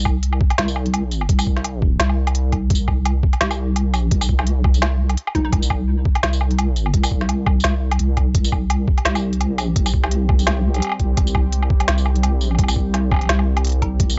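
Half-time drum and bass at 170 BPM with a light swing, heavy and tense, built on a deep, soft wobble bass with chorus and an overdriven, thumpy electronic kick, joined by an up-front electronic kit of woody snare, smooth hats, tambourine and woodblock that sounds re-recorded in a small room. A hollow, bouncy square pluck with tape echo flickers in the background around 3.4 seconds and again at 9.1 seconds, while a deep, moody ambient pad with sidechain pumping enters at 9.0 seconds to carry sustained chords. The sound is dry and gritty, with a cassette-tape character, in this cut from a longer piece.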